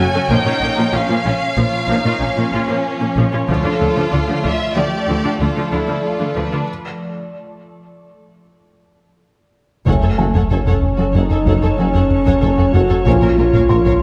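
Bathed in a wet scoring-stage reverb, this vast, tense cut from a hybrid orchestral and electronic film score opens at 94 BPM in 5/4 with a lush violin melody carrying a soft attack and smooth top over a distant second violin line, intense violas, expressive cellos, a focused double bass section, a calm, nasal organ-like drone with ensemble chorus, and a very quiet felt-muted upright piano whose action noise is audible. Heavy taiko sticks strike briefly at 3.5 seconds, and a break arrives at 6.7 seconds. At 9.9 seconds the taiko returns as up-front French horns, vintage-toned trombones, a very quiet tuba, a round sine sub bass and a tight, punchy sawtooth sequencer riff push the harmony from F#m toward A#m.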